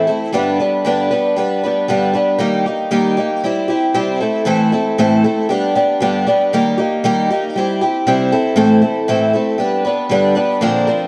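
A dark, warm production with a moderate plate reverb frames a short, jangly rock excerpt at 117 BPM in 4/4, tuned slightly low to A4 = 438 Hz. A picked twelve-string acoustic guitar plays solo and up front from 0.0 to 11.1 seconds, its boxy parlour body, shimmering octave-doubled strings, audible finger squeak and analog delay giving it a warm, ringing presence. After a brief opening on G, the harmony cycles through Eb, C, Am and back to G from 2.4 seconds onward.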